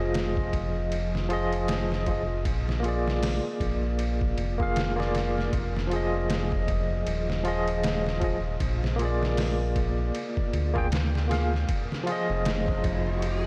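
A barky, lightly overdriven tine electric piano with tremolo, tape echo and a filter sweep opens this smoky, melancholic trip hop excerpt at 78 BPM alongside a round, deep analog bass, as a muffled, pitched-down sampler-style drum kit with a thumpy kick and swung 16ths joins at 0.1 s over Fm7 and Bb7 in F dorian, the dreamy mix soaked in huge ambient reverb until an electronic riser appears in the background at 12.7 s.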